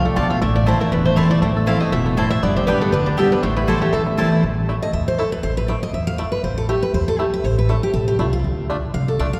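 Soaked in a cathedral's long, wet reverb, this bluegrass excerpt sounds as if it were captured in a church or concert hall, giving its minor-key tune a lonesome, haunting cast. At a racing 239 BPM in a swung 4/4 over A minor, G and D minor chords, a twangy fingerpicked banjo and a full-bodied jumbo guitar share the melody, while a dreadnought guitar picks accompaniment up front, a thumpy gut-strung upright bass plucks the low end, and a bright, double-strung mandolin adds stabs until 4.3 s. From 4.4 s a steel-string guitar takes a solo.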